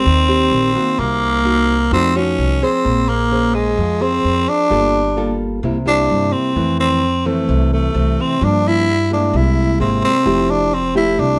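Heard in a small room with moderate reverb, this breezy, sunny bossa nova excerpt puts a raspy, growling tenor saxophone up front on the melody with scooped notes, over fingerpicked nylon-string guitar with audible finger squeak and a woody, thumpy pizzicato upright bass, moving through jazz chords before arriving on Fmaj9 at 10.3 seconds.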